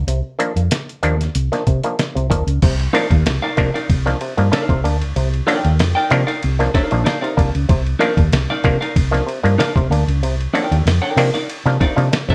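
Funk at 95 BPM in C minor, cut from a longer piece and resting on a Cm11 chord, with a hypnotic, cool mood built from a dark, round fingered hollow-body bass, a stringy, twangy overdriven auto-wah clav playing stabs up front, and a muffled, pitched-down sampler-style drum kit with a thumpy kick and fat snare, before a clean, picked semi-hollow electric guitar with spring reverb joins at 2.9 seconds, all in a moderate studio room.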